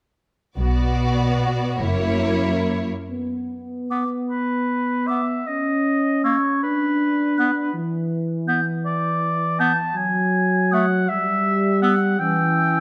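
Dark, up-front French horn chords take over at 3.1 s in this yearning, solemn classical excerpt in a rubato 6/8, following a brief opening of bowed, vibrato-laden strings (violins carrying the melody and a second line, intense violas, a rich, close cello section and focused double basses) that ends by 2.9 s, and the horns are soon joined by a bright clarinet, an airy, hollow flute and a warm, distant oboe, each adding second lines within a moderate stage reverb.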